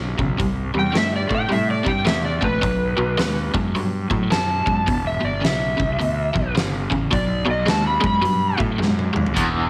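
Heavy and brooding, this short cut from a longer piece sits in blues rock power trio and southern rock territory with a swung 4/4 feel. An overdriven, double-tracked electric guitar carries the low riff with tremolo on it, while a fuzzed, growly fingered bass sits up front beneath it, bright and amped. A huge arena drum kit comes in at 0.2 seconds with a punchy kick, a fat snare, hi-hat and toms, sounding big and close, and it rounds off with a fill from 8.8 seconds. From 0.8 seconds a dark, overdriven slide guitar takes the melody high above, given a slapback echo. The harmony moves from C through B7 and Em to B, and a moderate echo-chamber reverb gives the whole a roomy depth.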